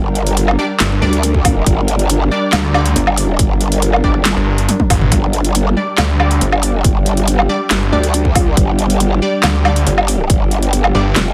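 A mellow, morphing wavetable pad and a wobbling, formant-filtered growl bass open this menacing, chaotic stretch of half-time wobble dubstep at 139 BPM in G minor, with the pad pumping in the background under chorus and reverb. The dubstep kit brings a huge snare, metallic hats, handclaps, toms and woodblock, with a fill at 4.7 seconds, while a punchy, tape-warm electronic kick joins at 1.3 seconds. A snarling, resonant sawtooth bass with a moving notch fills out the low end alongside the growl, and a bright, orchestra-hit-like stab cuts through with phaser and tape echo.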